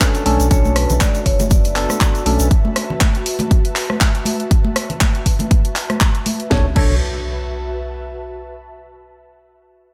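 A late-night, deep house groove at 120 BPM in B minor opens on Bm9 with a punchy, up-front electronic kick, a tape-toned house kit of cracking snare, handclaps, hi-hat, rim click and crash, and a grainy egg shaker in the background. At the same moment, a ringing vibraphone with medium hard mallets and slow motor vibrato plays a brief melody with digital delay, while hollow, nasal organ stabs with chorus, delay and sidechain pumping mark the harmony. A deep sine sub bass with octave joins just after, pumping with the sidechain, and bright, high-tuned congas played with hard hands enter too, running until 6.4 s. An ethereal, airy pad of detuned sawtooth and triangle voices, with slow attack, long release, ensemble chorus and reverb, sustains underneath. Once the chord moves to Esus24 at 2.5 s, the groove thins to kick, kit, congas and pad, with very quiet electronic downlifter and impact effects around the changes. 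At 6.5 s the Bm9 returns with short bursts of organ stab and sub bass, and the pad carries on to the end of this cut from a longer piece.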